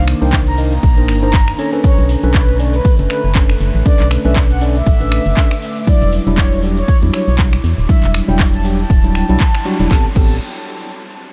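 This moody deep house excerpt opens straight into its drop, with a round, horn-like synth lead warbling through chorus and tape echo over a dark, detuned analog pad that pumps with the sidechain and shimmers with phaser, while a worn, slightly out-of-tune tine electric piano adds delayed stabs across minor-ninth chords. A hollow, organ-like FM bass sits up front beside a punchy, overdriven electronic kick from 0.3 seconds. A swung house kit with cracking snare, bright hats, claps, snaps, ride and crash enters at 0.1 seconds along with a grainy tube shaker in the background, all under light reverb, before a full-band accent at 9.4 seconds leads into a brief new section at 9.9 seconds.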